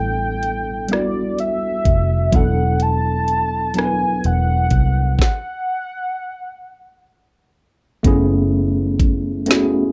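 Slow, sultry and yearning R&B in 6/8 at 42 BPM, cut from a longer piece, where a velvety, chorused sawtooth synth lead with vibrato and slapback echo carries the melody until 7.5 s over a worn, slightly out-of-tune, lightly overdriven tine electric piano, a round, punchy, foam-muted fingered electric bass and an up-front electronic drum kit with knocking kick, woody snare, rim click and metallic hats, moving from A9sus4 to E9sus4 into a stop at 5.2 s before settling on F#m11 at 8.0 s, in a dark, warm production with small-room reverb.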